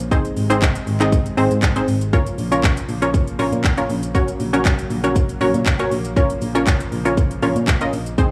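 Dance-pop with an energetic, driving feel, cut from a longer piece, where a punchy, up-front house drum kit with metallic hats and tape-warm character anchors a round, dark FM bass and a lush, detuned sawtooth unison pluck, both pumping with sidechain, while a smooth, chorused analog pad sits in the background and a crisp, distant group handclap, very quiet, enters at 0.6 seconds, all in a rough home demo mix with small room ambience and light reverb.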